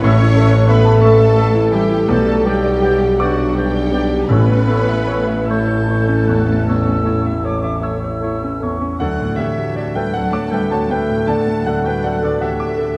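Classical romantic music for piano and orchestra, this lush, lyrical passage cut from a longer piece moves in a slow, rubato 12/8 in D major, around 50-62 BPM in dotted quarters. A clear, slightly worn grand piano sits up front with the melody across a broad range, joined on the melody by a distant, focused violin section, while a second violin section adds an expressive line with portamento. Flute, oboe, and a very quiet clarinet weave further second lines, the flute pure and hollow with a crisp attack, the oboe set back in the room. Underneath, a very quiet bassoon and a smooth viola section fill the accompaniment, a dark, tight horn section holds sustained chords, and the bass is carried by an intense double bass section, a lush cello section in the background, and a punchy, vintage-tinged tuba that stops at 8.8 s. Very quiet timpani with hard mallets sound briefly from 4.3 s, and the harmony settles onto D as a new section begins at 9.0 s. 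The whole is bathed in wet scoring-stage reverb with a dark production.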